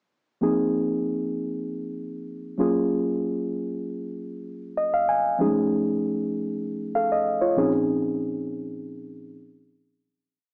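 Romantic and smooth, this short soul piece moves at 96 BPM in 4/4 with a light 16th-note swing, tuned slightly below standard pitch at A4 = 437 Hz. A mellow reed electric piano plays alone throughout, from 0.4 to 10.4 seconds, sitting up front with a reedy, clean tone heard through its built-in speakers. It holds rootless chord voicings, decorated with grace notes and short fills, one of which arrives at 4.5 seconds. The harmony passes from Ab6 through Gbmaj9 and F7alt to Bbm11 across a single verse. A moderate studio reverb and the small-speaker sound of a band playing live in one room surround it before it fades out from 7.9 seconds.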